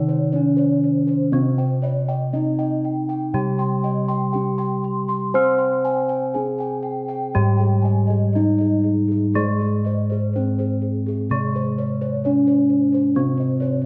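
From the opening moment, this hypnotic excerpt of Javanese gamelan in C pelog moves at 61 BPM in 4/4 with uneven beats, as a dark, smooth bronze metallophone carries the melody over a bright, horn-mallet metallophone accompaniment, while boxy bossed gongs and a paired-tuned metallophone with shimmering beats spin soft arpeggios above an airy bossed-gong bass, the whole ensemble set in a moderate recital hall reverb of 1.7 s.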